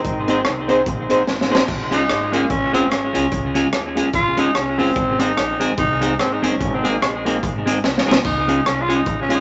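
Joyful, upbeat ska at 146 BPM in Db major, cut from a longer piece, where a tight horn section and jangly tack piano stabs open over woody pizzicato upright bass, a saturated breakbeat drum kit and a clean hollow-body electric guitar with dub echo, before a raspy, growling tenor saxophone takes an up-front solo from 1.9 seconds in a wet small room.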